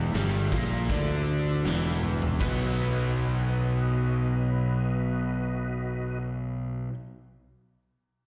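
An overdriven electric guitar riff, a growly fuzz bass and a lightly overdriven tonewheel organ open together on an Em7b5 chord in this raunchy, driving fragment of blues rock power trio and southern rock at 80 BPM in a straight 4/4. The bright, double-tracked, picked guitar sits up front with a slapback echo, while the punchy fingered bass is equally forward. Beneath them, the full-bodied organ holds sustained chords with a percussive attack, chorus vibrato and a slow rotary speaker. A huge arena drum kit with bright cymbals, a medium-tuned snare and a punchy kick plays from 0.1 to 2.6 s, pumping in its hall, and a drum fill at 1.7 s leads into a B chord at 2.4 s. The organ drops out at 6.2 s as guitar and bass carry on to 6.9 s, all of it heard as a live gig through the venue's PA, with recital hall reverb, small room ambience and a dulled top end.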